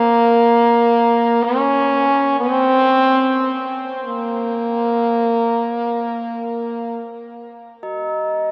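Spacious and haunting, this short cut from a longer piece of free-time world meditation music in Bb minor opens with a nasal, distant stopped French horn playing a solo classical-style melody between Bb3 and Db4, haloed in shimmer reverb and delay, until 7.0 s; mellow, solemn tubular bells then ring on Eb4 from 7.8 s, all washed in a huge ambient reverb and the warbly pitch drift of worn cassette tape.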